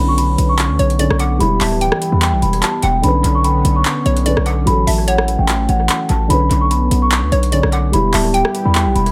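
A half-time trap groove at 147 BPM in 4/4 starts at 0.2 s from a booming analog drum machine with metallic hats, handclaps and rim clicks, over a hard-hitting, up-front 808-style bass that gives this menacing, eerie hip hop excerpt in B minor its weight. A bell-like large celesta carries the melody through a low-pass filter and analog delay, while a felt-muted upright piano adds dark, boxy accompaniment and a detuned sawtooth pad with chorus sustains chords cycling through Bmadd9, Em and A6. From 0.8 s a hollow square pluck traces a bouncy second line with chorus and delay, and the dry, echo-heavy mix keeps the atmosphere close and unsettling.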